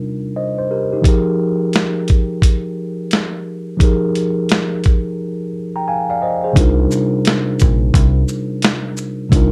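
Nostalgic and melancholic, this swung lo-fi hip hop excerpt at 87 BPM in C minor opens with a mellow, up-front tine electric piano colored by cassette tape and a low-pass filter sweep over Cm11 and Fm11 chords, joined at 1.0 seconds by a gritty, compressed sampler-style drum kit with a thumpy kick, medium-tuned snare, hi-hat and shaker re-recorded in a large room, and after a short break a dark, round fingered electric bass enters at 6.6 seconds, the whole mix sitting in a light reverb.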